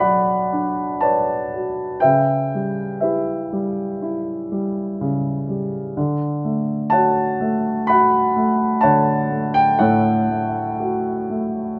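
Dark and wistful, this brief classical piece for lyrical solo piano unfolds at a slow 61 BPM in 4/4, played with a flexible, rubato feel and tuned to A4 = 443 Hz. A grand piano carries everything alone for the full 11.8 seconds, its tone dark and mellow, sitting up front in the sound. The harmony moves from Bmadd9 to C#m7b5 at 2.0 seconds, then settles on Dmaj7 at 6.0 seconds. The piano ranges from A2 up to B5, spanning its low register and upper notes. A light reverb gives the instrument a gentle sense of space, and the fragment, cut from a longer piece, leaves its wistful mood hanging.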